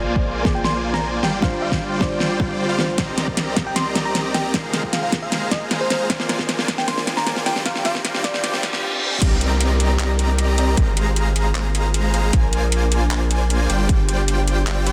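Huge, detuned supersaw chords pump with sidechain and dub echo across this lush, emotional half-time future bass cut in C minor at 154 BPM, riding over a thick, saturated sub bass, a punchy layered electronic kick and an up-front pop drum kit with a fat snare, metallic hats, handclaps and crash. Through the build-up a soft, round pluck, a shimmering, ethereal pad and a sparkling, bell-like FM electric piano with phaser carry the Cm7, Ab69, Bb7 and G7sus4 changes, while a fingerpicked concert harp enters at 3.0 s with ringing arpeggios. A drum fill, filter sweep, riser, reverse cymbal and downlifter lead into the drop at 9.2 s, where an airy, dreamy lead adds arpeggios over a dense, heavily limited master bathed in moderate shimmer reverb.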